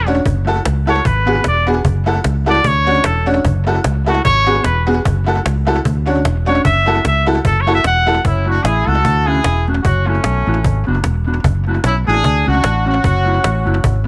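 Energetic, driving ska at 150 BPM in F# minor with a light swing, where a clear, punchy trumpet solos up front over round fingered electric bass, a dark, clean guitar through spring reverb, jangly tack piano stabs and a woody, dry cajon with tape echo, before a roomy horn section takes the melody at 8.3 seconds in this short cut from a longer piece.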